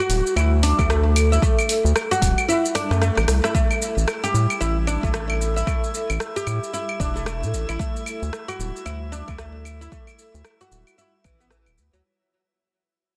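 A swung 113 BPM groove in 4/4 drives this mystical, hypnotic organic downtempo excerpt, where a woody, plectrum-plucked oud spins delayed arpeggios over a round analog bass with sidechain pumping, overdriven deep house drums of claves, hi-hat, rim click and shaker, and a deep electronic kick that drops out from 2.5 to 3.5 seconds for a drum fill before a glassy, chorused texture of drifting overtones enters at 3.9 seconds as the piece fades out, moving from Dadd9 to A5 and back.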